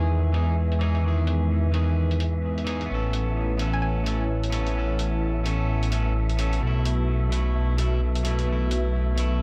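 A melancholic, rainy future garage fragment opens with a menacing, detuned saw bass up front beneath a deep, moody analog pad, a twangy, slightly broken-up electric guitar trailing tape echo and an airy, wind-like noise texture in the background, while a muffled, pitched-down hi-hat enters at 0.3 seconds and a hollow square pluck flickers for a moment at 3.7 seconds in an echo-heavy, dry mix that moves through Emaj7, Aadd9 and B7sus4.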